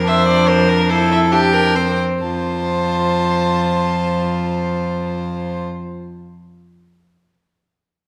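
A lively, spirited passage of a quick classical-period movement for string quartet, cut from a longer piece, rings in the wet acoustic of a recital hall, where all four players bow gut strings in period style with a reedy edge. The tempo moves between 132 and 147 BPM in a flexible 3/4 in F major, tuned to A4 = 441 Hz, and it slows over the first 2.2 seconds as the harmony passes from Bb/F to C/F before settling on F at the start of a second phrase. A dark, nasal, distant violin carries the melody from 0.1 s, a close, rich violin sings the second line, a viola with light vibrato fills in the accompaniment, and an up-front cello holds a low F in the bass.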